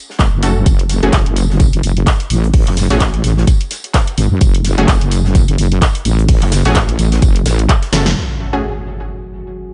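Swaggering and gritty, this bass house excerpt at 128 BPM in F# minor rides a swung 16th-note groove built on a punchy, up-front electronic kick, a layered house kit of handclaps, snare and bright hats, and a small-room acoustic kit with hi-hat, snare and tambourine, all joined by a heavy, saturated, detuned wobble bass with chorus that moves through a filter sweep, while a bold orchestra-hit-like synth stab with tape echo and cassette grit pumps against the kick over an F#madd9 chord, until a drum fill at 7.9 seconds and a band accent give way to an electronic impact at 8.2 seconds and a deep, dark, moody ambient pad that enters at 8.9 seconds.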